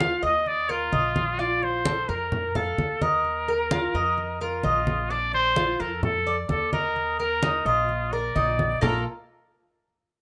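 A rough home-demo mix in a wet small room carries this relaxed, danceable Cuban son and guajira passage in Bb major at 129 BPM, cut from a longer piece and moving through Ebsus2, Bb5 and Bbmaj7 chords. An intimate, breathy trumpet with vintage vibrato and a soft attack sings the melody up front, while the metallic double strings of a picked Cuban tres spin arpeggios through plate reverb. Underneath, a woody, thumpy pizzicato upright bass on gut strings and low-tuned, thick-skinned congas keep a straight 4/4 groove until the parts drop out around the 9-second mark.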